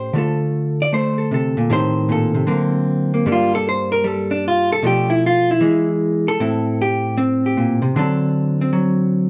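A hollow-body jazz guitar plays alone, up front and clean, its dark, compressed electric tone picked through a brisk swinging line in D minor. The tempo sits at 154 BPM in 4/4, with eighth notes swung, giving this short cut from a longer piece a moody lilt. The guitar ranges from G2 up to D5 over a sequence of minor and altered changes, moving from Dm7 through Am7b5 and D7b13 to Gm, then Bm7b5, E and Am7 before landing on D7 at 7.9 seconds. A moderate reverb from a large studio room surrounds the single instrument. The solo runs the full 9.3 seconds of this solo jazz excerpt.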